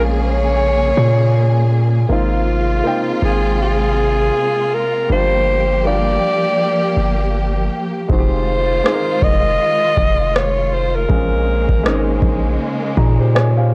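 A moody, longing contemporary R&B piece with a gentle swing opens on a mellow alto saxophone solo, up front with vibrato, over warm grand piano, lush bowed strings with sidechain pumping and a deep, sine-toned 808-style bass, before a booming analog drum machine of deep kick and rim click enters at 8.1 seconds, the saxophone drops out at 12.4 seconds and the piano closes with a fill, captured in a small room on dry, gritty cassette tape.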